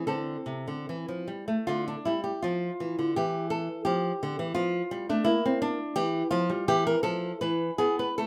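Grave and introspective, this short cut from a longer piece is a baroque-style classical dance in triple time for solo nylon-string guitar, played with a flexible rubato and uneven beats. The fingerpicked guitar sounds bright and small, with fresh strings and an audible finger squeak, and it sits up front in a moderate studio reverb. Its range spans from C3 to B4, and the harmony moves from A minor to D minor, with brief stretches where the chords fall away. An opening phrase gives way at 1.7 s to a restatement of the same material, which turns toward a G7sus2 over E near 6.0 s before coming to rest on a bare E5. The overall sound is intimate and quiet, suited to a reflective, stately dance.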